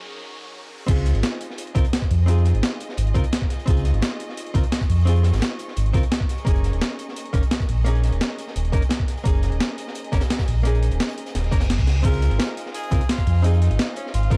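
Straight 4/4 breakbeats drive this lush liquid drum and bass excerpt, where smooth bowed strings hold sustained chords with sidechain pumping from the very start beneath an electronic riser, before a gritty, tape-warm sampled kit and a thumpy electronic kick drop in at 0.9 s, joined by a dark, crunchy breakbeat kit in the background, an up-front deep sine sub bass with an octave and tube saturation, and a clean, hollow-body archtop guitar with 12-bit sampler texture and digital delay, until a reverse cymbal at 11.5 s ushers in a bright, scooped jazz tenor saxophone with dub echo at 12.0 s.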